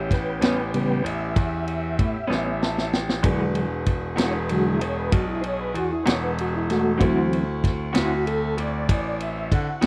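A soft, flute-like tonewheel organ carries the solo from the start, its tone rounded by a slow rotary speaker and chorus vibrato in this rollicking yet laid-back slow blues in 12/8, a short cut from a longer piece. Beneath it, a bright grand piano plays the bass line with a brilliant, polished sound, close and intimate enough that its action noise can be heard. A vintage drum kit sits up front with a punchy kick, a medium-tuned snare and dark ride cymbal, and at 2.3 seconds the drums and the grand piano drop in a short fill together. A dark, mellow baby grand piano fills in accompaniment in the background, alongside an electric guitar that enters at 0.4 seconds through a small old amp, slightly broken-up, picked and lo-fi, with tremolo. A very quiet horn section holds tight, vintage jazz-style chords with light vibrato over the A9, E9 and D9 changes. The dry, close studio sound has a 1970s character.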